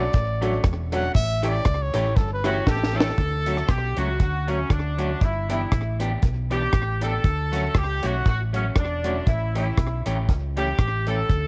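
Ska with a joyful, cheerful swing, opening on a breathy, intimate trumpet solo over jangly tack piano stabs, before a clear horn section joins on the melody at 2.5 seconds and a drum fill leads into the second section at 3.2 seconds, all supported by clean picked electric guitar with slapback echo, a round hollow-body electric bass and a dark, up-front reggae drum kit with a high-tuned snare, in a dry mix cut from a longer piece.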